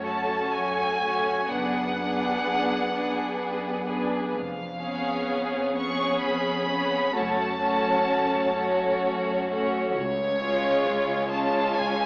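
A slow, rubato 3/4 at 64 BPM carries this elegiac, melancholic fragment of a romantic string-orchestra movement in F# minor, moving from F#m through G#m7b5/F# and C#7/E# before settling on C#. Up-front violin sections sing the vibrato-rich melody high above a second violin line, while violas fill in focused bowed accompaniment and cellos supply a smooth, even bass. A double bass section joins in the background from 1.5 to 10.7 seconds. The whole ensemble sits in a wet scoring-stage reverb with a lo-fi AM radio colour.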